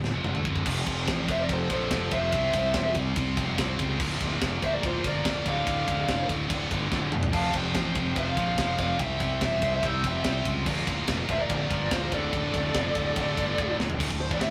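A drum fill on a tight, up-front kit with bright cymbals and a high-tuned snare opens this relentless, heavy metal excerpt at 144 BPM in D minor alongside a scooped, double-tracked high-gain guitar riff and a growly fuzz bass, with a second picked distorted guitar riff entering at 0.7 seconds and two dark, bluesy overdriven lead guitars arriving at 1.3 seconds, one carrying the melody and the other tracing a quieter second line behind it, all captured as a rough rehearsal-room recording with light reverb over a Dm, F, C and Bb/D progression.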